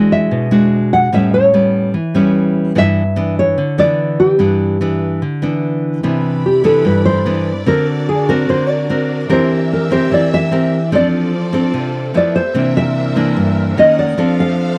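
Bossa nova at 147 BPM with a breezy, romantic mood, where a dark, full-bodied, thumb-plucked nylon-string guitar carries the melody up front over a second fingerpicked nylon-string guitar with audible finger squeak, the key moving from G lydian to C major at 6.0 s as the guitar takes a solo and a lush, bowed symphonic string section enters with soft-attack, vibrato-rich sustained chords set lower in the mix, in a dry, close 1970s-style studio sound with light reverb.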